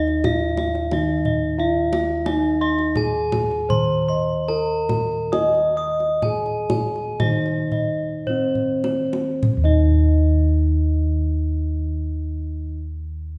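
Serene and shimmering, this short passage of Javanese gamelan in the pelog barang scale is cut from a longer piece, moving in a straight 4/4 at a tempo that ranges from 49 to 89 BPM and slows down from 2.3 to 9.4 seconds. A bronze metallophone carries the melody up front, its mellow, padded-mallet tone soft and ringing with a vintage, band-limited character. Above it, a second bronze metallophone struck with a horn mallet plays bright arpeggios, joined by a set of bossed gongs whose round, beating tones also trace arpeggios in a soft, close-up voice. Lower gongs supply the bass, their warm, boxy sound sitting in the background. The kendang adds tight acoustic percussion until 10.0 seconds, with a drum fill from 8.3 to 9.4 seconds leading into a new section, and the whole ensemble rings out in the wet reverb of a church or concert hall.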